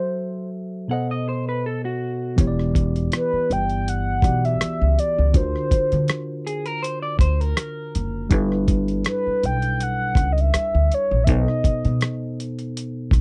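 A round, horn-like synth lead with chorus, slapback echo and a warbling vibrato sings a sultry melody over a worn, slightly out-of-tune tine electric piano, joined at 0.9 seconds by a dark, slightly broken-up electric guitar through a small old amp playing a second line, before a woody pizzicato upright bass and a compressed, tape-warm sampler-style soul drum kit of thumpy kick, hi-hat and rim click arrive at 2.4 seconds, giving this smooth, gently swung neo-soul fragment from a longer piece a dry, close 1970s-style studio sound over chords such as B7b9 and D7alt.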